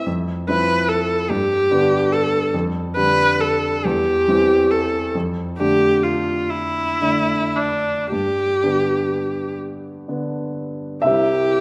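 A rich, focused bowed viola sings a tender melody from the opening moment, its vibrato up front over an open-sounding baby grand piano whose long sustain fills out the accompaniment. This serene romantic classical excerpt moves in a slow, rubato 6/8 at around 35-50 BPM in dotted quarters, its harmony drifting through G and Dm/F before settling on C at 11.1 seconds. A wet recital hall reverb with a 1.5-second decay surrounds the duo.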